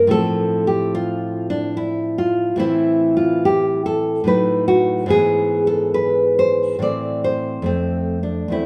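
Introspective and grave, this short classical passage is a baroque-style dance in A minor, cut from a longer piece and played on a solo nylon-string guitar. It moves in 3/4 at around 71 BPM with a rubato feel, so the triple pulse bends and breathes rather than holding strict time. The fingerpicked acoustic guitar sits up front with a full-bodied, deep classical tone and the warmth of fresh strings, spanning from E2 up to D5 and tuned to A4 = 441 Hz. The harmony opens on F/A, settles onto A minor at 2.6 seconds, and passes through B7/A and E/G# before returning to A minor and closing on F at 7.7 seconds. A moderate recital hall reverb gives each note a natural, roomy halo across the 8.7-second fragment.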